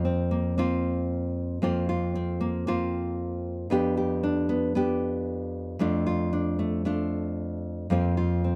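In straight 4/4 at 114 BPM, this short folk piece moves at an easy, unhurried walk in F major. A lone nylon-string guitar carries everything, fingerpicked and up front, its full-bodied, deep classical tone ranging from F2 up to G4. The harmony opens on Fsus4, shifts to G/F at 3.7 seconds and Dm/F at 5.8 seconds, then returns to Fsus4, all over a steady F in the bass. The mood is pastoral and warm, and light reverb adds a soft halo around the instrument. This brief excerpt is cut from a longer piece and lasts 8.6 seconds.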